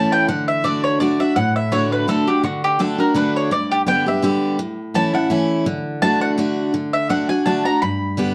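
Bluegrass in 3/4 at 167 BPM, this short excerpt in D major carries a joyful, rustic mood with a gentle swing on the eighth notes. A picked mandolin takes the melody and solos throughout, its woody, double-strung tone sitting up front and ranging from F#4 to B5. Beneath it, a picked steel-string dreadnought guitar plays accompaniment, full-bodied and bright, also placed close and present. The harmony moves from D through G and A before returning to D and touching G again near the close, as the opening phrase begins to repeat at 6.7 seconds. A moderate studio reverb and a dark overall production give the pair a cozy, intimate sound.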